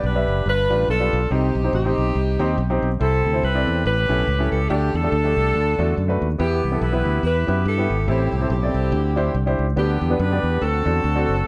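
A swung eighth-note pulse at 142 BPM in 4/4 drives this brief uptempo gospel excerpt, reverent in spirit yet uplifting. A saxophone section carries the melody up front as a single ensemble voice, its jazz-style phrasing colored by vibrato. Beneath it, an upright piano supplies clear, woody accompaniment with an intimate, polished presence, long sustain and audible action noise, while a fingered electric bass sits direct and up front on the low end. The harmony moves from G7 to Cm, passes through A7, Dsus4 and Em, and closes on D7 at 10.6 seconds. The production is dark and warm, wrapped in moderate large-studio reverb with a touch of small-room ambience.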